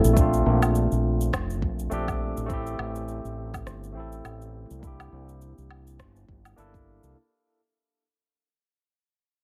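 Sunset chillout at 103 BPM with a gentle 16th-note swing, this sunny, smooth clip is cut from a longer piece and fades out across its full 7.2 seconds over Bbmaj9, Am7 and C7 chords. A barky tine electric piano, lightly overdriven through a combo amp and treated with a low-pass filter sweep and digital delay, carries the accompaniment up front beside a growling fingered electric bass with punchy tube-saturated grit. Alongside them, a layered electronic cabasa, woodblock and rim click and a deep electronic kick, entering at 0.2 seconds, sit in a small room ambience under light reverb.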